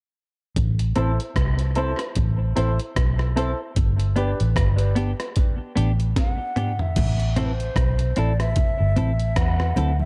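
A heavy, deep dub reggae groove at 75 BPM in 4/4, swung on the sixteenths, is carried by a dark, round, foam-muted fingered electric bass and a gritty breakbeat sampler-style drum kit with a thumpy kick and high-tuned snare, both sitting up front, moving from A minor to G and back in A dorian. A clean, picked electric guitar with subtle chorus and tape echo enters at 1.0 seconds alongside woody piano stabs that also carry tape echo. As a drum fill begins at 6.2 seconds, an airy, hollow jazz flute takes the melody with tape echo, and very quiet, ringing congas join at 7.0 seconds within a dark production touched by light reverb.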